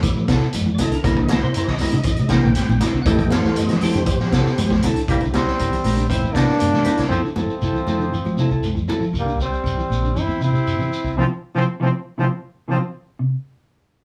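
A joyful, hypnotic afrobeat groove at 118 BPM in C mixolydian, cut from a longer piece, opens on a round, percussive tonewheel organ solo through a slow rotary speaker, over dark, clean electric guitar arpeggios, a punchy vintage drum kit with a high-tuned snare, grainy shekere, a warm fingered electric bass, a second guitar's stabs, and ringing congas in the background, before a clear trombone melody up front and a breathy, whispered alto saxophone second line enter at 5.1 seconds and carry the tune to a band accent at 11.2 seconds in a moderate studio room.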